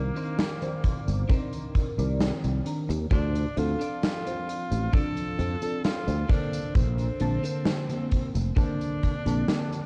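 The production is dark and warm with a cassette-tape hue, set in light reverb and a small room ambience, in this nostalgic, melancholic vaporwave excerpt cut from a longer piece in a straight 4/4. An FM electric piano layered with a soft pad carries the accompaniment from the start, lush and dreamy with a detuned, noisy edge, coloured by phaser, subtle chorus and vintage 12-bit sampler grit. Beneath it, a growly, up-front fretless electric bass sustains through ensemble chorus, while a big rock kit of hi-hat, medium-tuned snare and tambourine, recorded in a bright stone room, enters at 0.2 seconds and is joined by a punchy acoustic kick at 0.8 seconds. An edgy tenor saxophone takes the solo melody with forceful, pop-style phrasing, vibrato and scooped notes, trailed by tape echo. Far back in the mix, a clean, compressed electric guitar picks a riff through lush chorus and analog delay as the harmony moves from Cm9 to Dm7 to Bbmaj9.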